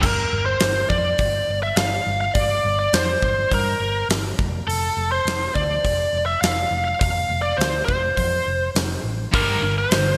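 A biting lead guitar sits up front in this heavy, aggressive hard rock excerpt, its overdriven, picked melody trailed by delay. Beneath it, a huge arena drum kit plays a straight 4/4 feel, with a fat snare, punchy kick, crash cymbal and hi-hat heard in a big room. A hollow-body short-scale electric bass, picked and amped with a dark, round tone, holds down the low end across the whole passage. Two rhythm guitars stay in the background: a cranked stack guitar with overdrive and a scooped high-gain guitar with distortion. Both strike at the opening and return at 9.3 seconds. The harmony moves from Gm to F5 at 4.4 seconds and back to Gm, all set in a lush hall reverb with bright 1980s-style digital production.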